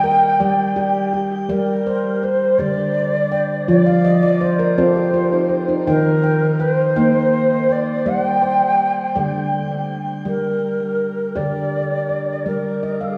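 A slow 6/8 pulse with a straight feel sets a meditative, hypnotic tone in this world-style tuned-percussion passage, cut from a longer piece. A bright, ringing stainless-steel handpan plays arpeggios throughout, its sharp finger strokes placed up front, with fills at 3.9 and again at 12.8 seconds. Above it, a mellow cedar flute in Native American style carries the melody, its airy wooden tone shaped by a soft attack and gentle vibrato. Both instruments are bathed in shimmer reverb and analog delay, and the harmony drifts through a cycle of minor, open and major chords before settling back home at 10.3 seconds. The echo-heavy mix sits in a wet echo chamber blended with small-room ambience, giving the short passage a floating, suspended atmosphere.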